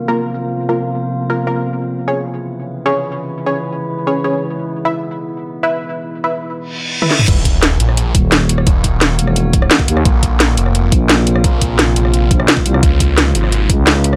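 Futuristic and aggressive, this dark technical drum and bass passage, cut from a longer piece, opens on an eerie, inharmonic FM drone beneath muted, detuned sawtooth dub chord stabs carrying tape echo as a filter sweeps across them, with a reverse cymbal rising in the background from 6.7 seconds. An up-front kit of cracking snare, metallic hats, rim clicks, toms and crash enters with a fill at 7.0 seconds. At the drop at 7.3 seconds an overdriven, knocking electronic kick takes hold, while a swirling, phased unison saw bass pumps against the kick and a growling FM bass joins at 8.1 seconds. Everything sits in a light digital ambience, with the drone's chorus and reverb lending a mellow sheen beneath the thick, overdriven low end.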